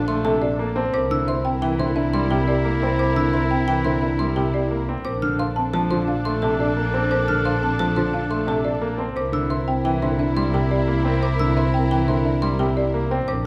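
Propulsive and bright, this minimalist classical pattern piece in 6/4 is cut from a longer work, with a woody, rustic folk marimba carrying the melody over a clear, vintage-toned clarinet second line and lush, vibrato-rich symphonic strings holding sustained chords. A dark, mellow concert grand spins arpeggios in the background, while a brilliant second grand piano with audible action noise supplies accompaniment and a sharp, airy xylophone with plastic mallets adds high arpeggios. A close, focused bowed double bass sits up front, and the ensemble rings in a reverberant recital hall as the harmony sways between Bbmaj7 and C7.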